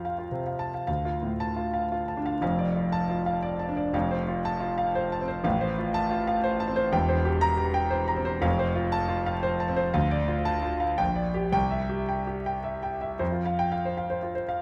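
Classical virtuoso piano study in 3/4 with a brilliant, heroic mood, played rubato at 106-122 BPM, where a warm, intimate solo concert grand with deep bass and audible action noise sits up front in a recital hall with moderate reverb, moving from D minor toward F major from 6.9 s before a new section arrives at 13.2 s, all beneath a layer of vinyl crackle in this brief passage cut from a longer piece.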